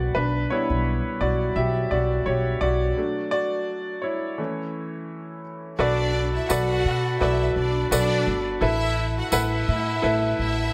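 A moderate concert-hall reverb gives this driving, dramatic piano-driven pop excerpt a sense of space, with a lightly swung sixteenth-note feel in 4/4. A bright, polished upright piano with long sustain and a dark, woody pizzicato upright bass on gut strings sit up front, with the harmony moving from G/B through D and A. At 5.8 seconds a lush, expressive bowed violin section with vibrato joins close by on Bm7, and a jingly, dry tambourine adds percussion from 6.5 to 9.5 seconds.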